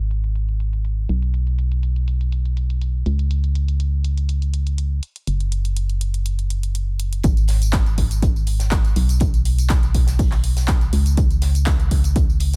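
Piano house with a soulful, bittersweet mood, this short cut from a longer piece rides a gently swung groove in four. An organ-like FM bass carries the low end from the start: hollow, dark and percussive, with a fast attack that then decays, sitting up front and pumping with sidechain compression. A dry, punchy analog drum machine adds handclaps, hi-hat and tambourine underneath while a filter sweep builds tension through the opening. At 7.2 seconds the drop lands, bringing in an up-front electronic kick that stays until 12.3 seconds, along with a deep reggae drum kit whose high-tuned snare and thinned, filtered hi-hats sit far back in the mix. The drum parts share a dry studio ambience, dressed with a reverb that has its upper frequencies rolled off.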